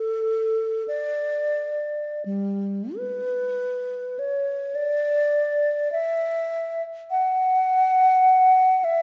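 Classical and freely expressive, this brief excerpt from a longer piece features a lone alto flute in a lyrical, nostalgic mood, moving with a rubato feel in 4/4. The flute sounds up front, airy and hollow, with a straight tone and crisp attack, ranging from G3 to F#5. A moderate concert-hall reverb of about 2.0 seconds surrounds it, giving the sense of a church or hall.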